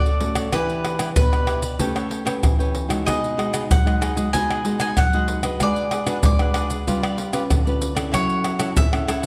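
A straight 4/4 samba and choro groove at 95 BPM comes from maracas, pandeiro, tamborim and a tight surdo, set close, dry and up front, giving this festive, playful fragment of a longer piece its drive. A bright bowl-back mandolin with double strings solos across the full 9.3 seconds, supported by fingerpicked classical nylon-string guitar with audible finger squeak and a crisp, picked cavaquinho sitting lower in the mix. The harmony travels from Dmaj7 through A9, B6 and G7#11 to F#m7, all inside a wet recital hall reverb.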